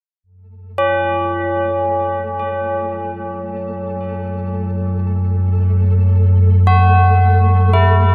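Desolate and cavernous, this short excerpt of dark ambient drone moves at a slow 56 BPM in F# minor, resting on a single F# minor chord throughout. Tubular bells enter first at 0.8 seconds, playing solemn arpeggios with a bright, metallic ring struck by a plastic hammer; they sit close-miked and up front, with delay trailing their notes. Just after, at 0.9 seconds, a deep rumbling drone rises underneath, an ominous wave-folded blend of triangle and sawtooth tones with a slow attack and long release that sits prominently in the mix. Alongside it, a faint grainy texture flickers higher up, built from detuned, granular triangle tones that bloom slowly and linger. The whole space is drenched in a huge, wet reverb with a long tail, giving the piece a vast, hollow atmosphere.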